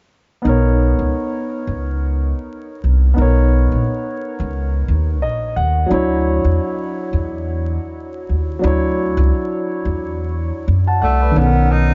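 Vinyl crackle and light small-room reverb frame this relaxed, cool jazz-hop fragment, where a dark, mellow baby grand piano with long sustain sits up front beside a woody pizzicato upright bass on a swung feel, the piano adding a fill at 4.9 s as the chords move from Bmaj9 to Dmaj9, before a breathy, distant tenor saxophone with subtone, vibrato and scooped notes enters at 11.0 s, its whispered line trailed by a delay.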